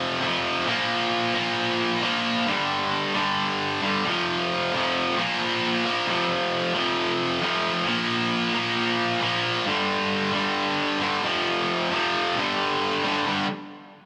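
A glossy 1980s-style digital production sets a single electric guitar up front in a moderate plate reverb, the cut opening straight into the riff from a longer rock piece. The tight, double-tracked guitar plays alone throughout, picked and distorted with a bright bite, cycling among F5, Bb5 and G5 power chords in a straight 4/4 feel. The mood is aggressive and menacing.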